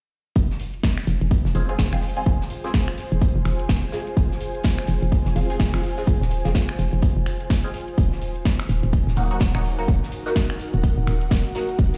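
Bass house at 126 BPM in F phrygian with a swung sixteenth-note feel, this bouncy, swaggering cut moves from Fm to Ebm at 8.0 seconds, driven by an up-front, punchy electronic kick, a layered house kit of finger snaps, hi-hat and snare, and a hollow, knocking FM bass with tube saturation and sidechain pumping. A loose acoustic indie kit with high-passed hats, a rolled-off top and a pumping room sits in the background, while from 1.1 seconds an ethereal, airy pad with ensemble chorus and built-in reverb breathes under the groove. A nasal, band-passed sawtooth chord stab enters at 1.5 seconds with phaser, chorus and tape echo, all heard as if played on a big sound system in a bare stone room.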